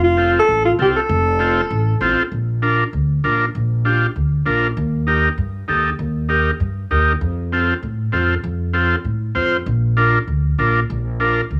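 A straight, even four-beat groove drives this joyful, danceable Latin snippet, cut from a longer piece. A breathy alto saxophone opens with a short pop-style solo melody that ends at 2.0 s; its light vibrato sounds distant and roomy even though it sits up front, tinted by cassette tape and plate reverb. An acoustic upright bass plays pizzicato throughout with a woody, steel-strung tone, and a vintage combo organ carries the accompaniment from 0.2 s with a buzzy, clean voice, also colored by cassette tape and plate reverb. The harmony moves through F, Bb, Eb, F and Bb, and a new section begins at 2.3 s. The home cassette recording has a small, booth-like room sound.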